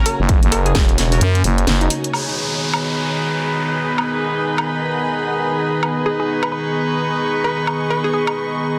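Aggressive and gritty, this bass house fragment rides a swung sixteenth-note groove and moves from an F# chord to G# minor at 2.1 seconds. A bright, sweeping resonant pad holds sustained chords up front with chorus and sidechain pumping, while a distant, roomy horn section fires punchy stabs through a low-pass filter and delay. Above them a dark, woody studio string section adds a lush bowed texture with vibrato, pumping in time as well. A hollow, nasal square pluck carries the bouncy melody in the background with chorus and delay, dropping out at 2.1 seconds and returning at 6.1 seconds. A growling, thick FM bass with tube saturation sits up front alongside a punchy, tape-tinged electronic kick, and the kick drops away at 1.2 seconds ahead of a band accent at 1.7 seconds. A garage drum kit with a cracking snare, hi-hat and woodblock keeps time throughout, an electronic downlifter sweeps through the middle, and the dense, heavily limited master has light reverb and a digital ambience.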